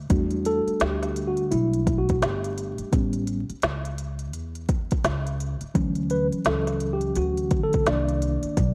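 Light reverb and digital ambience frame this short jazz-hop fragment, with vinyl crackle running beneath it for a nocturnal, cool mood. At 85 BPM in 4/4 with a 61% swing on the sixteenths, the organic electronic drum kit sits up front: a deep kick, woody snare and smooth hats are roughened by overdrive and sound as if re-recorded in a large room. The upright bass enters first at 0.0 s, plucked on steel strings with an acoustic, up-front tone in the low register. From 0.1 s the mellow tine electric piano plays a solo in a clean, warm voice through its built-in speakers, continuing until 8.7 s. The harmony moves through Em11, A9, Dmaj9 and Cm7 in E dorian, giving the passage its late-night colour.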